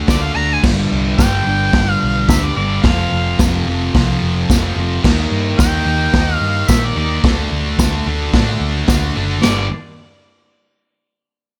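Garage rock with a raw, swaggering mood, this short excerpt from a longer piece moves at 109 BPM in a straight 4/4 and cycles through D, G, F and Eb before landing on G5 at 9.4 seconds. Up front, a bright, double-tracked fuzz guitar drives the riff, while a hollow-body short-scale bass adds a dark, round, amped bottom. A raw garage drum kit sits prominently, with a boomy kick, medium-tuned snare, dark cymbals and a saturated, gritty sound with a rolled-off top, all pumping in a small room. Over this, a mellow, vintage harmonica carries the melody with light vibrato, punchy attacks and scooped notes, given an overdriven edge. In the background, a clean combo organ holds sustained chords and a jingly tambourine adds percussion, with the organ stepping forward for a fill from 8.3 to 9.4 seconds.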